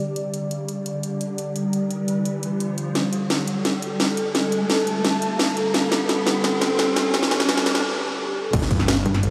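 Aggressive and dark, this cut from a longer piece of technical drum and bass opens with a resonant, warbling sawtooth pad holding sustained chords under lush chorus and sidechain pumping, while a riser and a filter sweep unfold together and an overdriven kit with a cracking snare, bright hats and crash plays a drum fill from 3.0 seconds. After a short break, the impact lands at 8.5 seconds with a tight, overdriven electronic kick and a swirling, phased detuned saw bass, joined briefly by a heavy, pulsing pluck wobble bass. The whole mix is dreamy and soaked in huge ambient reverb.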